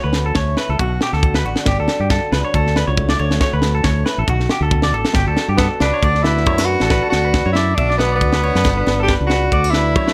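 Highlife guitar band music, danceable and carefree, moving at 138 BPM in 4/4 with a light swing on the sixteenths in D major, taken from a longer piece. A picked steel-string acoustic guitar with a boxy, parlour character sits low in the mix as accompaniment, while a clean, twangy electric guitar spins arpeggios in a higher register, touched with slapback echo. A round, dark fingered electric bass sits up front and punchy, joined from 0.1 seconds by a tight funk drum kit of kick and high-tuned snare with a small-room, mid-forward sound. The harmony circles through gentle seventh chords, Dmaj7, Bm7 and Gmaj7, lending a sunny, lilting glow. At 5.6 seconds a bright, forceful tenor saxophone enters with a pop-style solo melody, its vibrato and roomy, distant tone still standing up front, carrying the tune into the second section as a light reverb wraps the band.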